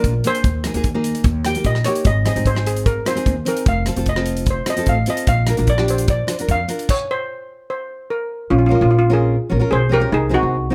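Sunny and carefree, this short calypso excerpt moves at 149 BPM in a straight 4/4, opening on an Ebsus4 before settling through Eb, Ab, F7 and Bb. A steel pan carries the melody with a metallic, shimmering tone struck with hard rubber sticks, sitting up front as the lead and taking a solo from the start until 8.5 seconds. Beneath it, a fingerpicked nylon-string guitar adds bright, fresh-stringed accompaniment with audible finger squeak and a deep classical body, while a pizzicato upright bass on steel strings gives a woody, growly, thumpy foundation placed up front in the mix. An acoustic drum kit with a tight kick, hi-hat, rim click and crash cymbal drives the groove until 7.0 seconds, and a stop falls from 6.9 to 8.5 seconds as the harmony drops to N.C. A new section then begins at 8.5 seconds on Bbm7 moving to Ab7/C, all captured with close, detailed microphones and little reverb.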